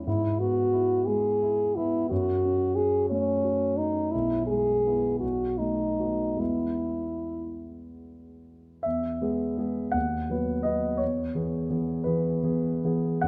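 A roomy, distant-sounding French horn sings a serene melody up front in this slow, rubato Romantic classical duo in E major and 6/8 at roughly 46-61 BPM, with grand piano accompaniment rich in deep bass that carries on alone after the horn's line ends at 7.6 s and closes the 13.3-second passage, all set in a warm concert hall with moderate reverb and captured by close, detailed microphones.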